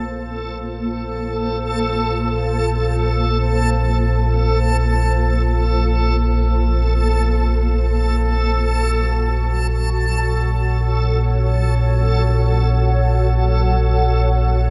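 In free time, this dark, desolate ambient drone in Bb harmonic minor rests on a deep, ominous rumbling drone that sits up front with a filter sweep running through it, while a mellow granular cloud pad fades in on blurred, evolving sustained chords. A reversed, detuned swelling texture hovers on a single dreamy note above, and both the pad and this texture carry a shimmer reverb. A moderate spring reverb surrounds the excerpt as the harmony moves from Bb5 to Gbm at 7.9 seconds.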